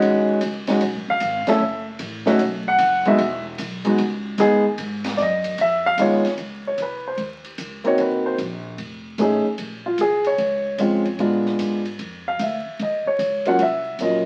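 A swinging 4/4 pulse at 150 BPM, with a swung lilt on the eighth notes, drives this short jazz piano trio fragment, cut from a longer piece, its mood warm and swinging. The upright piano carries the melody up front, woody and long-sustaining, moving through a harmonic path that begins on B6 and Emaj7 before settling into Db major at 6.4 seconds with a Dbsus2. From there the changes darken through Cm7b5, F7alt and Bbm9 toward Ebm7. Beneath it, the pizzicato upright bass on gut strings sits low and thumpy, while the open drum kit brings dark cymbals on hi-hat and ride, a high-tuned snare and a boomy kick, and the whole band lands a shared accent at 1.4 seconds. A wet studio reverb surrounds the trio, and the sound carries the dusty crackle of a very old 78 rpm record.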